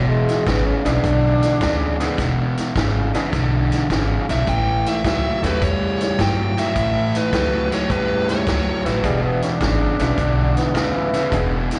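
Swaggering and rollicking, this electric blues shuffle at 105 BPM swings in 4/4 over E7 and A7, its biting overdriven guitar riff up front beside a woody, thumpy pizzicato upright bass and a mid-forward vintage drum kit with punchy kick and medium-tuned snare, while a jangly, metallic tack piano sits in the background from 0.8 seconds. A breathy tenor saxophone with vibrato and scooped notes plays a second line at the opening and again from 8.8 seconds, framing a smooth overdriven lead guitar melody that takes over at 4.3 seconds, carrying tape echo on top of the slapback echo it shares with the riff guitar, piano and sax. The sound is that of a live gig heard through the venue's PA, set in recital hall reverb with a rolled-off top, in a short cut from a longer piece.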